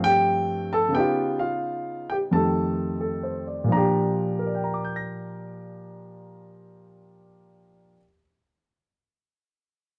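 A lilting swing at 87 BPM in 4/4 carries this playful solo jazz fragment in Bb major, cut from a longer piece, where a warm baby grand piano, polished, present and up front with a short sustain, ranges from F2 to Bb6 through a G9sus4, Db9 and F9 before settling on a Bb6 at 3.7 seconds, captured by close, detailed microphones in light reverb.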